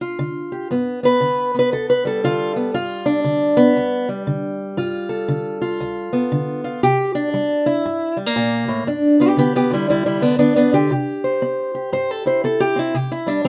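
A fingerpicked steel-string acoustic guitar with a boxy, parlour-sized tone carries this gritty, soulful piece of acoustic country blues, cut from a longer performance. It sits up front, its fresh strings ringing and an occasional finger squeak audible, across a range from D2 to C5. The tempo is 118 BPM in 4/4 with a swung eighth-note feel, centered in G mixolydian. After a brief opening passage, the guitar takes a solo from 2.7 seconds to the end, moving from G7 to C7 at 6.8 seconds and then through G and C. A moderate studio reverb gives the playing a sense of room.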